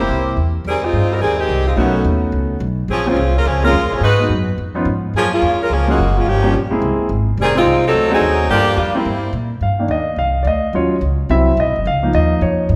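Sultry and swinging, this short big band jazz passage moves at a brisk 214 BPM in 4/4 with a light swing on the eighth notes, set in F minor. A saxophone section carries the melody as an ensemble, its sound warm and touched with vibrato, and sits up front until it drops out at 9.3 seconds. Beneath it, a concert grand piano supplies accompaniment with natural tone and deep bass, while a pizzicato upright bass with steel strings gives a woody, dark low end. At 9.6 seconds the music shifts to C minor and the piano takes a solo through to the close, over a harmony rich in ninths, altered dominants and half-diminished color. The whole band is heard in a recital hall, with a lush 1.6-second reverb that adds spacious church-like bloom to this fragment of a longer piece.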